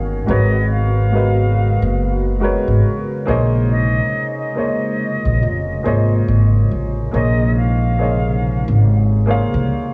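A muffled upright piano and a growly, pizzicato upright bass, up front in the mix, open this nostalgic, hazy hip hop excerpt at 70 BPM in Bb minor, moving between Abm11 and Bbm11 with a lazy sixteenth-note swing. At 0.3 s an airy concert flute enters with a distant vibrato melody trailed by tape echo, and at 0.8 s a hollow, detuned pad with a slow attack and chorus fills in sustained chords. Light small-room reverb and a cassette tape character give the whole piece a faded, dusty sheen.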